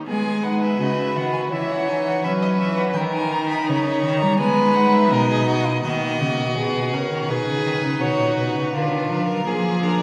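In a straight 4/4, this driving, serious baroque-style fugue for string quartet, cut from a longer piece, sets a rich, even first violin carrying the melody from a distance against an expressive, up-front second violin sliding with portamento, a focused viola accompaniment and a warm, forward cello bass, each a single bowed player with vibrato, all in a wet church reverb as the music moves into a new section at 5.8 s.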